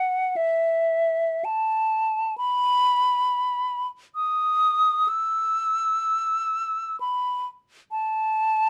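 A hollow, airy concert flute sings alone from the first moment, close-miked and up front, its crisp attacks and vibrato shaping a lyrical, serene classical line in a freely stretched three-beat rubato. The solo stays in the upper register, from E5 to E6, across this brief 8.7-second fragment of a longer piece. Light reverb and a dark, warm production soften the surrounding space.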